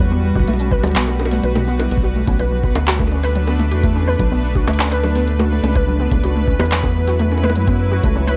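The sound is dry and close, with little room ambience, in this short, intricate IDM fragment cut from a longer piece, with a cerebral mood and a straight pulse. A rubbery square-wave bass sits up front, hollow and bouncy with a resonant filter pluck, carrying the low end under a deep, overdriven analog kick drum that drops out at 8.1 seconds. An organic electronic kit of crisp hi-hats, shaker, handclaps, bongos and toms adds a tape-warm, produced texture around it. A warbling, lo-fi pluck spins dark, detuned arpeggios through ensemble chorus and digital delay, with a noise layer and filter sweep giving it a dusty edge. Behind it all, a granular cloud pad holds blurred, evolving chords in its own reverb as the harmony moves from Gmaj7/B to Bm7 and on to F#7sus4/C#.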